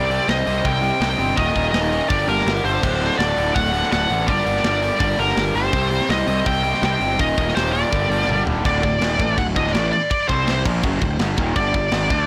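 A high-gain lead guitar, bright and up front, carries the melody across this aggressive, dark heavy metal fragment, cut from a longer piece and moving in a straight four. Beneath it, a second high-gain lead guitar with a warmer tone sits in the background, tracing a lower line until about 8.4 seconds. A tight, double-tracked distorted guitar drives the riff, while a growly, punchy fuzz bass sits up front with its overdriven, picked attack. The tight acoustic drum kit, with a medium-tuned snare and a kick that softly clips, plays crash, hi-hat, snare and toms, and a fill near 8.3 seconds marks the move into a new section built on power-chord shifts. The whole recording sounds blown-out and overdriven, with only a light reverb around it.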